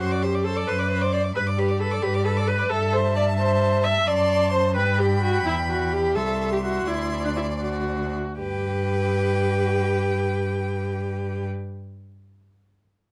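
The viola stands out most, its rich, vibrato-laden tone sitting up front in the accompaniment of this cheerful, lively classical-period movement for string quartet. Cut from a longer piece, it moves in a quick 6/8 at 76-90 BPM counted in dotted quarters, in G major with a rubato feel. High above, the first violin carries the melody with a warm, focused, smooth-topped sound. The second violin plays a clear, more distant second line, and the cello anchors the bass with an even, smooth bowed tone. The harmony circles from D7/F# through G, Am7/G, Em and C to D7, slowing from 4.8 s before settling on G as a new section begins at 8.4 s. Close, detailed microphones and little reverb keep each bowed line distinct.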